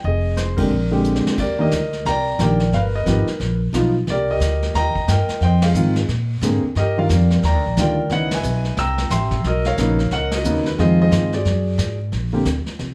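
Jazz piano trio in a playful, swinging mood, cut from a longer piece, with an intimate, up-front grand piano carrying the melody over a woody, growly pizzicato upright bass and a distant, roomy brush kit whose top end is rolled off. The band hits shared accents, including ones at 0.5 and 5.6 seconds, and the drums slip in a short fill from 1.0 to 1.4 seconds, as colourful chords drift through lush extended and altered harmonies. The piano's action noise and deep low end come through clearly, and light reverb gives the trio a natural studio ambience.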